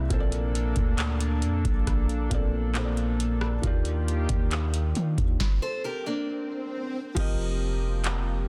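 Moody and sensual, this short cut of contemporary R&B moves at an unhurried pace in a straight four. A felt-muted upright piano carries the accompaniment with a soft, intimate tone and audible action noise, while a shimmering, retro pulse-width pad holds sustained chords under sidechain pumping. A long, deep 808-style bass sits up front beside a booming analog drum machine of deep kick, crisp snare, metallic hi-hats, handclaps, rim clicks and crash cymbal, roughened by vintage 12-bit sampler grit. The harmony shifts from Bbmaj7 to Ebmaj7, and a stop begins at 5.4 seconds. After a brief touch at the very start, a boxy, picked archtop guitar with finger squeak and tape echo returns at 5.6 seconds, alongside an electronic swell that runs until 7.2 seconds, when an F7sus4 opens the next section. The mix is dry, dense and heavily limited.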